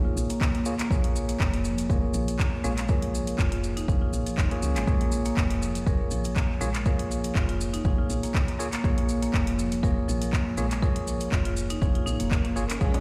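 A punchy, overdriven electronic kick drives this afro house excerpt at 121 BPM in Bb minor, with a 16th-note swing giving the driving, earthy groove its lilt over a Bbm7 chord. Beneath it a round, dark FM bass with a woody edge pumps against the kick, while hard-mallet marimba arpeggios on padauk bars and bell-like stabs from a clean tine electric piano both pump too, run through dub echo and a low-pass filter that sweeps across the whole clip. An afro-pop drum kit adds handclaps and metallic hi-hats re-recorded in a large room, and grainy, close maracas sit quietly in the mix. At 12.1 seconds a very quiet electronic swell appears, and at 12.8 seconds a lush, bowed string section with vibrato enters on sustained chords alongside a deep, very quiet djembe played with soft hands. The overall sound pairs light reverb and small-room ambience with the boom of a big sound system in a bare room.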